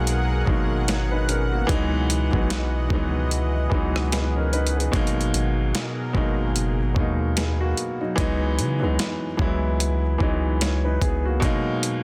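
Contemporary R&B with a longing, moody atmosphere, moving in an unhurried, swung groove that shifts between G#m9 and C#m11. A warm baby grand piano sits up front with a natural, short-sustained accompaniment, while a lush, thick sawtooth pad of detuned unison voices, colored by chorus, swells in slowly beneath it before fading out at 8.1 seconds. Underneath, a long, deep 808-style bass with a sine tone strikes quickly and then decays, dropping away at 11.4 seconds. A dusty, sampler-style soul drum kit, overdriven and compressed to a gritty edge, comes in at 0.1 seconds with hi-hat, rim click, a medium-tuned snare and a thumpy kick pushed close to the listener. The dry sound and dense, heavily limited modern master keep this short excerpt from a longer piece feeling intimate and tightly packed.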